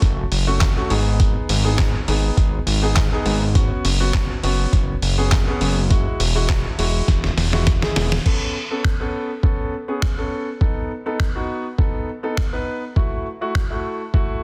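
A driving, confident dance-pop excerpt opens with gritty, pitched-down, sampler-style trip hop drums (a thumpy kick, finger snaps, handclaps, hi-hat, crash and a softly clipped snare) alongside a fat, detuned sawtooth analog bass with a filter sweep and a warm concert grand piano, both sidechain-pumped, before a drum fill from 7.1 s and the bass's exit at 8.2 s leave piano and drums moving through Aadd9, B7 and F#m7 in a dry, dense, heavily limited mix.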